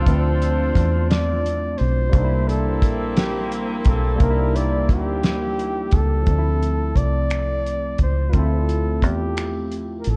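A slow, straight six-eight R&B groove at 58 BPM in D minor sets a late-night, yearning mood, carried by a cloth-damped, thuddy acoustic kit with a fat snare, tight kick, hi-hat and finger snaps, and a deep, round, foam-muted dub bass, both sitting up front. Over a barky, lightly overdriven tine electric piano with analog chorus moving from Dm7 to C7, a warm, close-miked flugelhorn sings the solo melody with light vibrato and analog delay. A distant, roomy jazz horn section adds tight stabs through delay until 5.9 s, before the passage returns to Dm7 at 6.3 s, all heard through light reverb and a cassette tape recording in this short cut from a longer piece.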